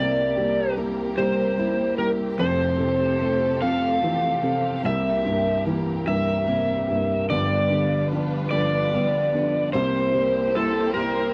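From the opening moment, an overdriven slide guitar sings an aching melody up front over a soft, felt-muted upright piano with audible action noise. Meanwhile, a fingerpicked steel-string acoustic guitar with fresh strings and finger squeak weaves tape-echoed arpeggios in the background, and a dark, lush string section sustains bowed chords with expressive vibrato, moving from C7 through Fmaj7 and G7 in this melancholic six-eight pop ballad excerpt, which is bathed in plate reverb and captured as an intimate home cassette recording in a small booth.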